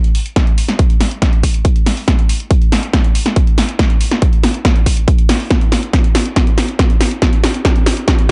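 A layered, punchy electronic kick sits up front from 0.4 s in this uplifting trance excerpt at 140 BPM in a straight 4/4, driving an 8.3-second build-up that runs as one continuous drum fill. An analog drum machine supplies hi-hat and a punchy snare, its tape-warm tone re-recorded in a small room, with sidechain pumping on the hats. The dark production and light reverb give the passage a soaring yet bittersweet mood.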